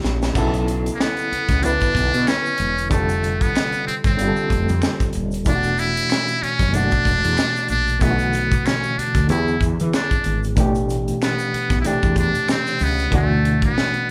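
A short drum fill opens this smooth, late-night neo-soul and R&B excerpt at 94 BPM, with a tight funk kit of bright cymbals, a high-tuned snare and a tight kick swinging lightly on the sixteenths. Underneath, a dark, round fretless bass with a woody, hollow-body tone holds down the low end, while an overdriven reed electric piano adds gritty, reedy chords pulsing with fast tremolo through a combo amp. A muted trumpet enters at 0.9 seconds and carries the melody up front, its buzzy, breathy tone shaded by light vibrato and a soft attack in a jazz style. An egg shaker, finger snaps and handclaps sit close and dry in the background. The harmony drifts through rich extended chords, from Bm11 and F9 to E9sus4, Am9 and finally D69, and the whole band sounds as if playing live together in a large studio with moderate reverb.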